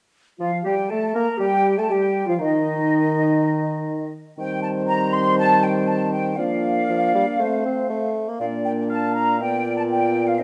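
Spirited and cheerful, this quick classical-period excerpt for symphony orchestra sets an up-front, airy flute ensemble, bright and expressive with vibrato and tongued notes, over a distant, roomy clarinet line, both carrying second lines from 0.4 seconds. A light-vibrato bassoon supplies accompaniment while a mellow French horn section holds soft-attack sustained chords, and the harmony moves from an opening chordless stretch into Cm/Eb, Bb/F, F/A and Bb before closing on G7#9/A#. A wet recital hall reverb gives the ensemble a resonant glow as the fragment breaks off.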